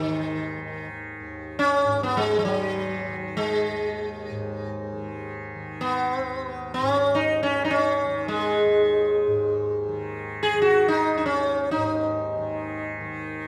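A reverberant recital hall surrounds this short Hindustani classical passage, cut from a longer piece, in raga Malkauns on Eb, unfolding in free time with a meditative, longing mood. Up front, a round, buzzing sitar carries the melody, its plucked notes ringing with sympathetic strings, while a softly plucked tanpura sits beneath as a quiet, shimmering drone. The sitar falls away at 12.8 seconds, leaving the tanpura to sound alone until 13.5 seconds.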